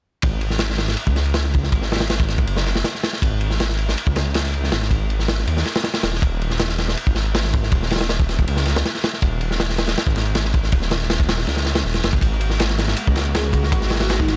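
A straight 4/4 drum and bass groove with jungle roots drives this raw, nostalgic cut from a longer piece, built on a crunchy, saturated breakbeat kit up front, with tight kick, medium-tuned snare and dark ride cymbal, over a thick, menacing detuned saw bass sustaining beneath a D#7(no3) chord in a small room. At 12.2 seconds the harmony turns to G#m9 as a rich, bowed string section with vibrato enters in the background alongside a dusty, compressed sampler-style kit of high-passed hi-hat and snare. From 13.3 seconds a woody marimba with medium hard mallets adds a brief melody through dub echo.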